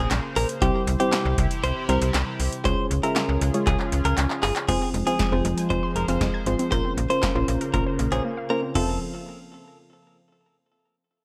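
Lightly reverberant, this driving, nocturnal synth-pop excerpt pairs a snappy FM bass with a metallic attack and a tape-warm analog drum machine, both up front, with a deep kick, punchy snare, handclaps, hi-hat and crash alongside an evolving, full-bodied pad that holds sustained chords. A soft, round, dark pluck carries the accompaniment, while a clean, compressed, direct-recorded electric guitar, treated with phaser and digital delay, picks out a second line. A drum fill from 3.7 seconds leads to the entry of a lush, warbling unison pluck playing arpeggios in the background at 4.7 seconds, and a brief break at 8.2 seconds marks the next turn.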